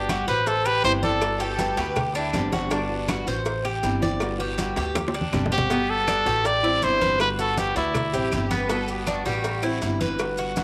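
A punchy, vibrato-rich trumpet opens this sunny, danceable Cuban son in G major at 160 BPM, over a fingerpicked nylon-string guitar, metallic double-string arpeggios from a Cuban tres and a thumpy pizzicato upright bass on gut strings. Congas, round low-tuned cowbell and bongos, a raspy guiro, grainy maracas and very quiet woody claves sit in the background. A smooth, clear bowed violin section enters at 1.4 s as a second line, and during a drum fill the trumpet returns at 5.5 s, all set in a moderate spring reverb and a small room.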